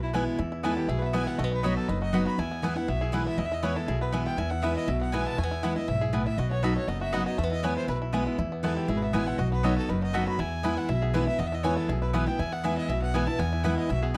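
Driving and joyful, this bluegrass passage is cut from a longer piece and moves in a straight 4/4 over chords that shift between E and B. A biting fiddle with an airy, earthy bow carries the melody from the first moment. At 0.1 s a twangy, percussive banjo played with fingerpicks joins it on the tune, touched with a slapback echo. Up front, a bright, full-bodied dreadnought guitar with fresh strings gives picked accompaniment, while a thumpy pizzicato upright bass anchors the low end and a mandolin adds woody, double-string stabs. The dry, close 1970s-style studio sound runs its opening section twice, with the repeat starting at 8.4 s.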